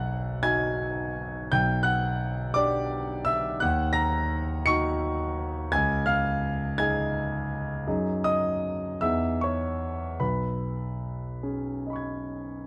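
A gently swaying 6/8 pulse, stretched and relaxed by rubato, carries this hazy, serene impressionist piece for solo piano, cut from a longer work. A clear concert grand sits up front, ranging from deep bass notes to the high treble, its long sustain blooming into light reverb within a dark production. Over 12.7 seconds the harmony drifts through colorful chords such as Gmaj7/B, D#m7, C#add9 and Emaj7 before settling on B69.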